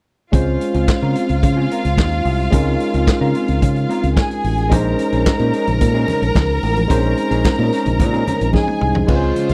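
Joyful and celebratory, this disco excerpt in Db major moves at 110 BPM with a straight 4/4 feel, built on an up-front vintage drum kit with a punchy kick, dark cymbals and handclaps, alongside a round, dark fingered bass, while a barky, lightly overdriven tine electric piano and a very quiet, slightly broken-up electric guitar fill in the accompaniment. A lush, distant violin section carries a second line over the Dbmaj7 to Bbm11 change, hard-handed congas join at 4.7 seconds, and after a drum fill a clear, earthy string section enters with sustained chords at 9.1 seconds. The sound is dry and close, in a 1970s studio style with little reverb.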